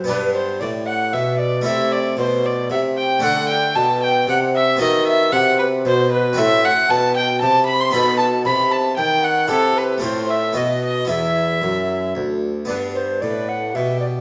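Moving in a straight three-beat metre, this solemn, flowing baroque-style sonata movement with continuo is cut from a longer piece. A tenor recorder carries the melody from the start, its airy, wooden tone marked by a crisp chiff and vibrato, though it sits somewhat in the background. Up front, a single bowed violin plays a second line with a close, nasal gut-string sound in period style, entering at 0.1 s. Beneath them a dry, close-miked harpsichord with two sets of strings plucks the accompaniment in French style, while a mellow bassoon with a soft attack supplies the bass. The harmony shifts into a minor key around 6.4 s before arriving back on G at 12.7 s, all set in the wet ambience of a recital hall.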